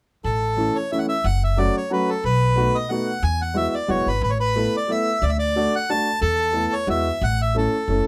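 A whirling, charming musette in a lightly swung 3/4, this short cut from a longer piece puts a reedy, dark bandoneon melody up front over a thumpy, gut-string pizzicato upright bass, with a woody, vintage upright piano joining at 0.6 seconds to add intimate accompaniment with audible action noise and long sustain, the trio captured by close, detailed microphones in light reverb.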